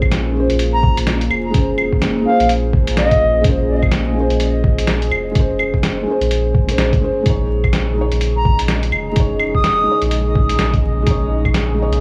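Future garage with a nocturnal, ghostly mood, cut from a longer piece and riding a swung 16th-note groove: a muffled, thumpy electronic kick and a pitched-down, sampler-style kit of claves, hi-hat and medium-tuned snare sit over a deep, round dub sub bass. A felt-muted upright piano with audible action noise plays dark, intimate accompaniment through tape echo and sidechain pumping, while a warbling, detuned pad drifts in the background with chorus, phaser and pumping over chords moving from Bbm9 to Dbsus2. A bright, reedy wooden flute with vibrato carries the melody from 0.7 s and returns at 8.4 s, a very quiet, breathy wind-like noise layer enters at 8.9 s, and the gritty hardware recording is dry and dusted with vinyl crackle.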